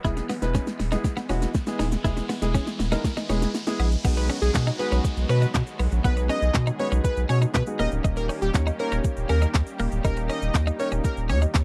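A thick, saturated sub bass sits up front in this upbeat, euphoric dance-pop excerpt, its deep, fast-attack tones pumping against the kick at 120 BPM in straight 4/4, in B major. An electronic R&B drum kit, overdriven and close, pairs a soft kick and fat snare with metallic hi-hats, handclaps, shaker and crash, while a grainy tube shaker ticks very quietly beneath. The opening four seconds form a build-up, with a drum fill and an electronic riser and downlifter over an E chord. At 4.0 seconds the drop arrives on B6, later moving to D#7, and a punchy, catchy sawtooth lead with a filter pluck, sub octave and tape echo enters at 4.2 seconds. Filling out the harmony are a concert grand piano with rich low end, a clean, compressed twelve-string electric guitar riff with subtle chorus, and a lush, nasal, detuned pad in the background, with the piano and pad also pumping and all three softened by a low-pass filter. 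The sound is dry and intimate, like a close 1970s-style studio recording with little reverb.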